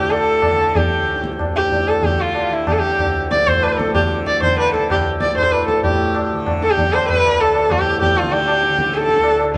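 Solemn and longing, this fragment of Hindustani classical music sets an up-front bowed sarangi, full of vibrato, gliding portamento and the resonance of its sympathetic strings, over a softly plucked, buzzing, shimmering tanpura drone, while a low-tuned, ringing tabla enters at 0.1 s from a distant-sounding large room, the whole passage gradually speeding up and captured by close, detailed microphones with light reverb.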